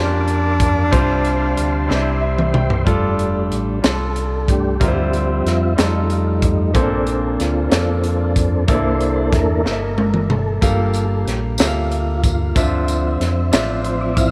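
A smooth tonewheel organ with key click, chorus vibrato and a slow rotary speaker takes over as the soloist at 2.9 seconds in this soulful, hopeful slow gospel passage in 6/8, cut from a longer piece. It follows a brief, breathy tenor saxophone phrase, close-miked and intimate with subtone and scooped notes, that ends at 2.2 seconds. Throughout, a clear, vintage-toned grand piano accompanies and adds a fill just before the solo, a dark, round fingered electric bass sits up front, and a crisp fusion drum kit with a high-tuned snare and punchy kick plays fills, while a jingly tambourine joins in the background from 10.6 seconds, all under light studio reverb.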